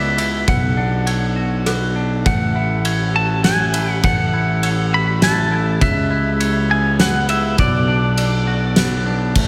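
A big arena sound with moderate scoring-stage reverb frames this euphoric, hopeful post-rock excerpt at 101 BPM in 3/4, where a bright, slide-played clean lap steel guitar carries the melody over twangy picked electric guitar arpeggios and smooth, bell-like glockenspiel arpeggios struck with hard plastic mallets in the background, the three sharing slapback echo and digital delay, while a round, punchy fuzz bass sits up front beside a loose indie drum kit with a fat snare, tight kick and dark cymbals entering at 0.2 s, the harmony moving through Bmadd9, A6, C#m7 and Bm.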